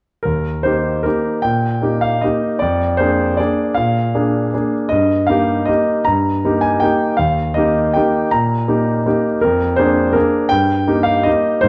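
In a dark production with moderate recital hall reverb, this brief cut from a longer classical piano waltz in Eb major presents an up-front, clear concert grand playing solo from 0.2 to 11.7 seconds, ranging from Eb2 to Bb5 with a deep bass and a smooth, vintage tone, in a playful, sparkling 3/4 at 148-172 BPM with rubato and tuned to A4 = 439 Hz, moving through Eb, Bb7/F and Eb/G harmonies.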